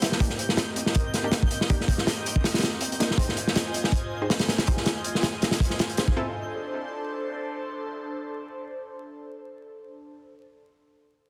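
Nostalgic and raw, this drum and bass excerpt pairs a crunchy, saturated breakbeat kit, up front with a tight kick until it drops out at 6.2 seconds alongside a twinkling granular shimmer, with an airy, breathy pad carrying sustained chords through chorus and phaser and a bold, orchestra-hit-like synth stab that sits in the background with dub echo, all over a dense master flecked with vinyl crackle.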